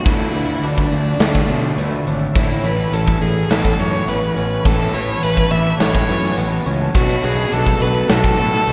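Post-rock with a euphoric, hopeful lift, this short cut from a longer piece moves at 104 BPM in a straight 4/4 in A major, passing through Dmadd9, Aadd9 and Bm7 chords. A clear, focused solo violin carries the melody, bowed close with vibrato, while a big acoustic rock kit sits up front with a punchy kick, a medium-tuned snare and hi-hat ringing in a bright stone room. A fuzz-driven fingered electric bass growls underneath from 0.1 seconds, and an overdriven semi-hollow guitar plays a riff in the background. Two more guitars weave arpeggios further back: one slightly broken-up and compressed through a small old amp, the other clean and twangy with tremolo. A very quiet granular pad hovers above in blurred, detuned, evolving sustained chords, and the whole mix is bathed in the long, wet reverb of a church or concert hall.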